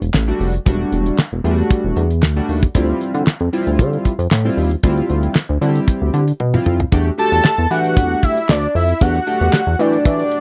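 A fat, nasal analog lead takes the spotlight near the end, entering at 7.2 seconds in a high register with detuned sawtooth weight, a touch of vibrato and a slapback echo that gives each note a quick shadow. Beneath it, this short cut of early-eighties boogie funk sets a late-night, funky mood in straight 4/4, carried by a chorused synth bass whose glossy pulse-wave tone and filter pluck sit low and up front. A chorused polysynth fills the middle with full-bodied, sustained chords that move from Em11 to Dm11 and back to Em11, its filter sweep adding a retro sheen. The damped 70s drum kit is acoustic and mid-forward, with a fat snare, tight kick, hi-hat, toms and handclaps, and a drum fill at 6.4 seconds leads into the second section. The sound is dry and close, like a 1970s studio session, with every part placed near the listener.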